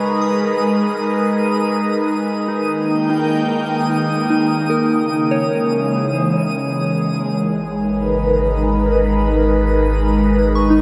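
Ambient piece in G# minor at 74 BPM in 3/4, melancholic and serene, heard as a short cut from a longer work set in a vast, echoing space with a huge reverb. An airy, breathy pad holds sustained chords up front with chorus and phaser, while a soft, pure FM bell plays arpeggios through diffuse delay, a twinkling granular texture sparkles high above, and a very quiet, string-like drone sustains until 7.5 s. At 7.4 s a deep, round sub bass enters on G#1 as the harmony returns to G#m after moving through D# and C#m.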